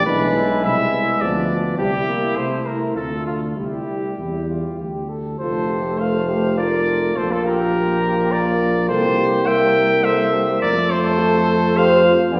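A mellow, vintage-toned trumpet sits up front carrying the melody in this triumphant brass quintet passage, cut from a longer classical work in F major at 104 BPM in 3/4. Just beneath it, a close-miked flugelhorn with light vibrato sings a second line. A French horn with a smooth top and a distant, roomy euphonium fill out the accompaniment from the background, while a soft-attacked tuba anchors the bass. The opening moves from a diminished chord through C and D minor, and a fresh section begins at 5.4 s, settling into a plain F, Bb, C7, F cadence that resolves home by 10.6 s. A wet recital-hall reverb gives the whole ensemble the glowing resonance of a church or concert hall.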